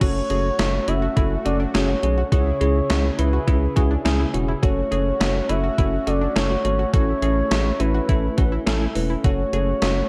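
A straight 4/4 groove at 104 BPM from a gated 80s digital drum machine, with a thumpy kick and gated-reverb snare up front, drives this driving, nocturnal synth-pop passage in F# minor, where a rubbery, bouncy square bass sits beneath a bell-like tine electric piano, a brassy analog pad with chorus holds sustained chords in the background, an analog pluck plays arpeggios through chorus and tape echo, and a smooth, expressive synth lead with vibrato carries the melody across a dark production moving through F#m, C#m and A.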